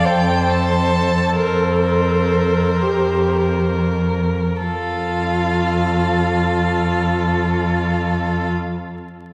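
Heard through the wet bloom of a church reverb and a vinyl crackle, this tender, serene excerpt from a slow romantic string quartet movement sways in 6/8 with rubato, easing back over its first 4.6 seconds. A distant, smooth violin carries the melody above a second violin's even inner line, while a close, expressive viola accompanies with portamento and soft attacks, and an up-front cello holds the bass. Each bowed part sings with rich vibrato over harmony that rests on F, shades to Fadd11 at 1.4 seconds and returns to F at 4.6 seconds.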